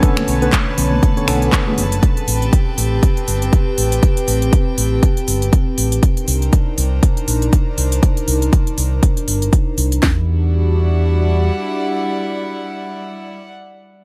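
A swung deep house groove opens this cut from a longer piece, with a punchy kick and cracking snare up front, layered over crisp hi-hats, finger snaps and handclaps. High-tuned congas with a thin, distant skin sound sit in the background, and a clean tine electric piano throws a few delayed, pumping stabs before dropping out by 1.8 s. A dark, round fingered electric bass holds the low end up front, while a warbling, lo-fi pad built from square and triangle tones breathes slow-attack chords through chorus and its own reverb, pumping against the kick. Above it, a bright, earthy chamber string section plays close bowed textures and fades across the opening stretch as the chords move through Bm9, Am9 and Cm9. The snaps, claps and hats stop at 10.0 s and the kick and snare at 10.2 s, leaving bass, pad and strings to settle onto Em9 in a hypnotic, warm mood with glossy 1980s-style digital sheen and light ambience.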